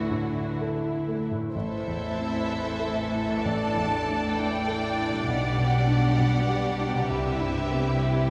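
The recording sits in a wet scoring-stage reverb, heard from further back in the room, which gives this cinematic film-score excerpt an enveloping, spacious sound. The mood is tender and hopeful, and the rubato feel lets each phrase breathe. From the start, a rich violin section carries a focused second line, a smooth, even viola section and a close cello section supply accompaniment and bass, and an intimate grand piano with audible action noise and short sustain sits in the background. Beneath them, a very quiet fingerpicked concert harp rings out arpeggios. At 1.5 seconds a bowed double bass section joins underneath, and at 1.6 seconds a dark, woody violin section takes the melody with a soft attack and vibrato. The harmony moves from Dadd9 through Am, Dsus2/A and G/B to Cmaj7, with the lush strings playing on until the cut at 8.3 seconds.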